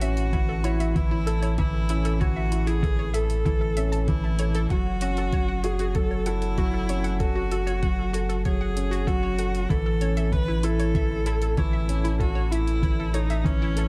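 Piano and strings electronica at 96 BPM in a cinematic, hypnotic mood, with a rich, biting solo viola melody over a thick-felt upright piano riff, a background analog pluck arpeggio with chorus, digital delay and sidechain pumping, a deep round sine sub bass that also pumps, dark layered hi-hats and a muffled, thumpy pitched-down kick entering at 0.3 seconds, all set in a dark digital ambience as the chords move from A to F#m and back.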